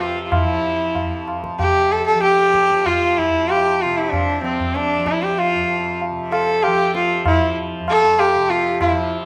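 In a straight four that gradually speeds up, this radiant, serene fragment of Hindustani classical music puts a single bowed sarangi up front, its nasal, earthy tone gliding between notes with light vibrato and a ringing halo of sympathetic strings, over a buzzing, shimmering tanpura drone and a low-tuned tabla with a close, dry, short ring, all set in a moderate recital hall reverb.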